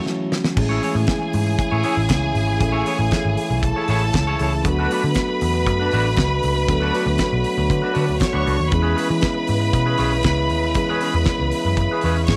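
Disco with a glamorous, sultry mood, this passage is cut from a longer piece and opens with a brief band accent on an F#m7 chord while the drums play a short fill. From the very start, the tine electric piano plays mellow accompaniment as if through its built-in speakers, and a French horn section holds warm sustained chords with light vibrato in a classical style. At 0.6 seconds the groove settles in: a dark, round, foam-muted electric bass, picked and pushed through transformer saturation, sits up front, and a clean picked electric guitar adds accompaniment. Above them, a lush, bowed studio string section carries a clear, focused second line with vibrato and a smooth top as the harmony moves through Amaj7, D6 and E6. The dry, polished 70s kit, with a fat snare, tight kick and dark cymbals, plays in light reverb and a studio ambience.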